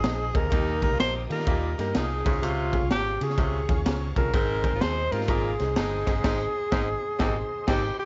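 Uptempo 1960s-style soul in Ab major at 126 BPM, with a swung 4/4 feel that sounds joyful and warm across this short cut from a longer piece. A breathy, whispered tenor saxophone carries the melody up front with scooped notes and slapback echo. Beneath it, a foam-muted, round electric bass and a gritty, saturated breakbeat drum kit with a punchy kick and high-tuned snare drive the groove, while a very quiet, ringing vibraphone traces a second line until 6.2 seconds. A woody, slightly detuned upright piano sits in the background with a bright tonewheel organ holding reedy sustained chords through a slow rotary speaker. A vintage baritone saxophone riff enters at 0.3 seconds and a present saxophone section adds a second line from 0.5 seconds, before the band hits an accent at 6.2 seconds over chords moving from Ab through Eb and Db back to Ab, all in a light reverb.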